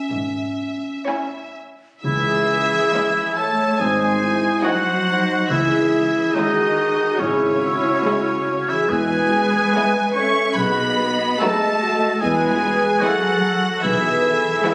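Classical orchestral music, yearning and solemn, moves with a rubato feel in this passage cut from a longer piece. A rich violin section carries the vibrato-laden melody above a second violin line set in the background, lush violas, expressive cellos with portamento, and distant double basses. A dark clarinet voices a brief second line at the start; a warm oboe, hollow flutes and a mellow tuba join at 2.0 s, a French horn section adds smooth sustained chords from 3.8 s, and soft-mallet timpani are barely audible near 5.5 s, all within a wet scoring-stage reverb and a dulled top end from a phone capture in the room.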